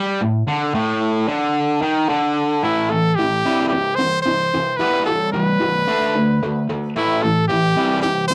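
Driving and gritty, this rock passage cut from a longer piece moves at 111 BPM in a straight 4/4 feel in A minor. A bright, overdriven electric guitar, picked and double-tracked, opens by itself with a riff ranging from A2 to D4, sitting up front in the mix. At 2.6 seconds a brilliant, punchy trumpet joins in pop style as a forceful solo voice, singing a vibrato-laced melody between E4 and C5 that stands just as far forward as the guitar. Under the trumpet's entry, the harmony moves through A5, C, Em and D5 before circling back to A5 and C. The sound is dry and close, like a 1970s studio session, with only a light touch of reverb.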